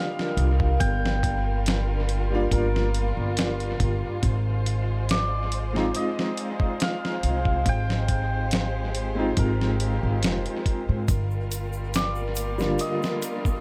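A mellow, shimmering hammered dulcimer carries the melody from the first moment, its ringing notes trailing tape echo. Beneath it, a worn, slightly detuned upright piano plays a boxy accompaniment that wavers with tremolo and echo, while a dark violin section holds bowed, vibrato-laden chords roughened by vintage 12-bit sampler grit. This hypnotic, dark trip hop fragment, cut from a longer piece, settles into a straight 4/4 feel as a compressed, sampler-style drum kit arrives almost at once, its thumpy kick, fat snare and hi-hat sitting up front with studio reverb and analog delay. A woody pizzicato upright bass on steel strings joins just after, prominent in the mix, and stops at 12.8 s. The harmony moves from Gm7 to Ab6 and back to Gm7 at 11.1 s, when a close, dry egg shaker slips in at the back, and near the close a very quiet, flickering granular texture with a slow attack adds a faint detuned haze to the small, echo-heavy room.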